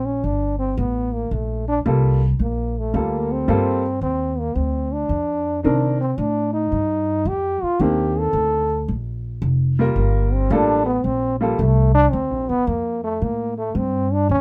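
A swinging 4/4 at 111 BPM carries this moody small-group jazz excerpt in G minor, where a warm trombone solos with light vibrato and scooped notes over a thumpy, woody pizzicato upright bass, while a boxy upright piano with short sustain comps from 1.9 to 11.6 seconds through Gm9 and Cm9 chords, all captured up front by close, detailed microphones with little reverb.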